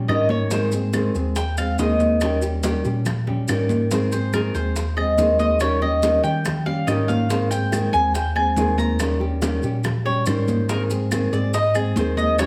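Cuban son and guajira at a danceable, sunny 142 BPM in Ab major, this 12.5-second excerpt features a metallic, double-strung Cuban tres soloing in arpeggios up front over a dark, full-bodied fingerpicked nylon-string guitar and a mellow tine electric piano carrying the bass through its built-in speakers, while ringing high-tuned congas, tight bongos and woody claves sit behind in a large studio reverb and close, grainy maracas enter at 0.5 seconds, as the harmony swings between Eb7 and Ab.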